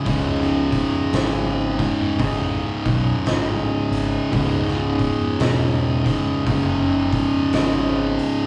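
Recorded as a band playing live in one room, this short cut from a longer stoner and doom metal piece sits in a moderate stone room reverb and crawls at a hypnotic, ominous 56 BPM in 4/4 with swung eighths, starting on a C#5 chord. Two thick fuzz guitars play the riff throughout, one dark and set back and the other warm and up front, over a growly overdriven fingered bass and an oversized low-tuned drum kit whose saturated, gritty sound pairs a fat snare and boomy kick with the hi-hat. In the background a tonewheel organ holds smooth, clean sustained chords through a slow rotary speaker, its key click audible.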